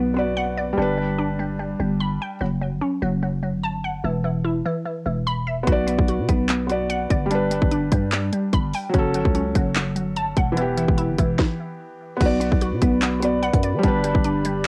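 A home-made cassette sound with light reverb frames this eerie, hard-hitting trap cut, taken from a longer piece in B minor at 147 BPM with a half-time feel. A glassy, crystalline wavetable pluck spins detuned arpeggios up front through chorus and tape echo, while a growling, buzzy 808-style bass underpins the cycle of Bm, G, F#m and E chords. A felt-muted upright piano adds soft, intimate accompaniment with audible action noise, dropping out briefly early on before returning. The overdriven trap kit crashes in at 5.7 seconds with a hard-clipped kick, sharp snare, bright hi-hats, handclaps and crash cymbal, sitting loudest in the mix with a cassette grit of its own. After a stop at 11.4 seconds, a new section opens at 12.2 seconds as a deep, moody analog pad slowly fades in with dark, sustained chords.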